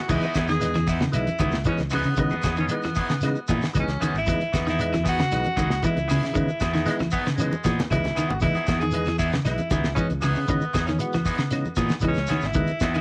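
A straight 4/4 groove from a damped 70s drum kit with a fat snare and cassette-tape coloring, round fingered bass, close grainy shekere, low-tuned ringing congas and very quiet woody claves drives this intense, hypnotic afrobeat excerpt, where a clear tenor saxophone with scooped notes carries the melody over a C#m9 bed of slow-rotary, key-clicking tonewheel organ, a chorused guitar playing arpeggios and a warm, twangy guitar playing stabs, both slightly broken-up, while a raspy baritone saxophone surfaces briefly at 6.9 s just before a drum fill at 7.4 s.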